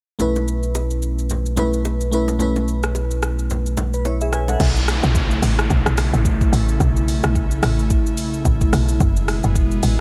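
A crystalline, chorused FM electric piano, a deep sine sub bass, an electronic afro-pop kit with a deep kick and metallic hats, and close, ringing congas and bongos open this hypnotic, late-night amapiano cut at 109 BPM on swung 16ths over B9sus4, until the drop at 4.6 s swaps the piano, sub and hand drums for a punchy, woody log drum bass up front, a soft, breathy chorused pad and a faint electronic downlifter, moving to F#9sus4 at 9.0 s in a dry, close mix.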